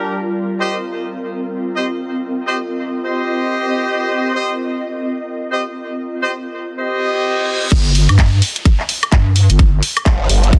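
A heavy, resonant wobble bass crashes in at the drop at 7.7 seconds of this aggressive, swaggering bass house excerpt at 128 BPM with a swung 16th feel. It follows a Cm opening where clear, roomy horn-section stabs with dub echo ride over an ethereal, airy pad, both pumping to the sidechain. A background reverse cymbal and downlifter lead into the drop, where a tight, overdriven electronic kick and a house kit of bright hats, handclaps, woodblock and filtered crash join the wobble bass, before a growling, formant-filtered bass arrives at 10.1 seconds in a dense, heavily limited mix.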